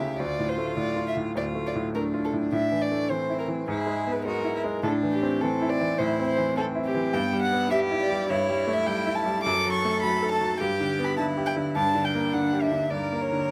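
A dark, intimate violin plays the melody up front, from G4 to D6, with light vibrato, a soft attack and an airy bow, in this lively, cheerful excerpt of a quick classical-period piano trio movement at 104 BPM in 4/4, taken with rubato and tuned to A4 = 439 Hz. Beneath it, a rich cello carries an intense second line with vibrato and a smooth top, while a bright, brilliant grand piano gives a present, polished accompaniment with short sustain through harmony that moves from Dm through Am, E/G#, Em/G and F#madd11 to G and Gm. Close, detailed microphones and light reverb keep the 13.5-second passage clear and near.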